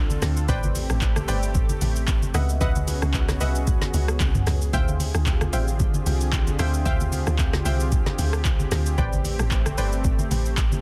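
Late-night and hypnotic, this amapiano clip rides a punchy log drum bass and an up-front electronic afro-pop kit with a deep kick and metallic hats, while bright, close congas sit in the background, a thick, airy detuned pad pumps with chorus beneath, and a round, evolving analog pluck with delay adds stabs from 0.5 to 10.0 seconds over minor eleventh chords in a dense, dry, heavily limited mix.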